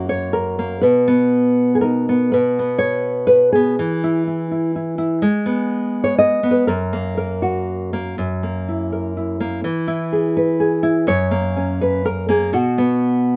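A dark, thumb-plucked nylon-string guitar plays alone and up front in this peaceful, pastoral folk fragment cut from a longer piece, moving in a rubato three-four metre from F# through G#m, F#7 and E with classical poise, ranging from F#2 to D#5 and set in light reverb.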